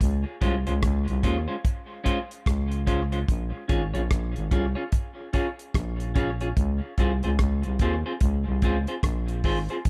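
A growling, thick FM bass sits up front in this serious, laid-back roots reggae excerpt at 73 BPM with a swung sixteenth feel, joined by a dry, damped 70s drum kit of tight kick, hi-hat and rim click, while a clean, picked semi-hollow electric guitar enters at 0.4 seconds with dub echo over Dbmaj7 and Bbm7 chords in an echo-heavy mix with little reverb.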